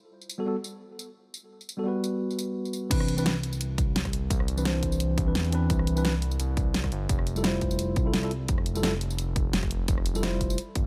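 A smooth, detuned sawtooth synth bass with saturation and vibrato drops in at 2.9 seconds together with a punchy layered electronic kick, under a mellow tine electric piano with tape echo and a pop drum kit with a fat snare, crash, hi-hat, rim click and tambourine, giving this uplifting, lush liquid drum and bass excerpt in C major at 172 BPM a light reverb and a swung 16th-note feel over chords moving from Gmaj7 to Cmaj9 and Fmaj9.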